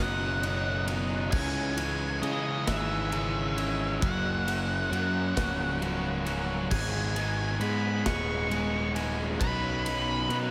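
A dark, distorted octave-fuzz lead guitar carries the melody high above this hopeful, soaring post-rock passage in 6/8, its tone trailed by tape echo. Beneath it, an up-front electric bass with warm, overdriven fuzz anchors the harmony. A bright distorted electric guitar and an overdriven semi-hollow guitar with a hollow-body tone and slapback echo share the riff, the latter sitting in the background. A very quiet, twangy twelve-string electric guitar picks clean, compressed arpeggios, while a mellow, bell-like glockenspiel struck with soft plastic mallets rings out its own arpeggios through slapback and tape echo. A big rock drum kit enters at 0.4 s with a punchy kick, a medium-tuned snare and gleaming crash and ride cymbals, as the chords move from B through C#m, F# and G#m back to B. A lush hall reverb gives this excerpt a big arena sound.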